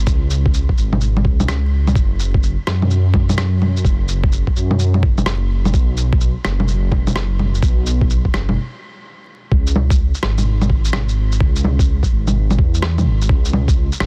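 Wistful and rainy, this future garage excerpt moves at 127 BPM in C# minor with a swung 16th feel, built on a deep, rumbling detuned saw bass with tube saturation and sidechain pumping, an overdriven, thumpy, pitched-down kick sitting up front in a small room, and muffled, tape-warm shaker, bongos and rim click, all under a dense, heavily limited master flecked with vinyl crackle, with a brief stop from 8.6 to 9.5 seconds before the next section begins.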